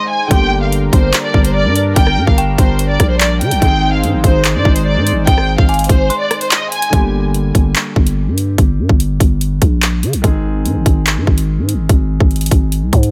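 Cold and dark, this half-time drill excerpt sets a lush, bowed violin section with vibrato and portamento over a mellow vintage piano, a smooth detuned sawtooth pad and an eerie, warbling FM bell in the background, while a growling, buzzy 808 bass and up-front electronic drums with a hard-clipped kick, metallic hats, handclaps and rim clicks enter at 0.3 seconds, leaving the piano, bass and drums to carry on alone after 6.9 seconds.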